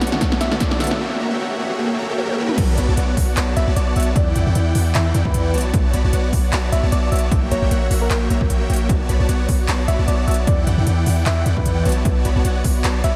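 Huge, detuned supersaw chords pump with sidechain and analog delay over punchy, overdriven electronic kick and a crisp big-room kit in this dreamy, emotional future bass excerpt in B minor at 152 BPM with a half-time swing, where a brief worn piano, a background riser and drum fills build to a drop at 2.6 seconds that brings in a deep, boomy 808-style bass under a round, gentle FM lead with vibrato and cassette-tape character, all soaked in huge ambient reverb.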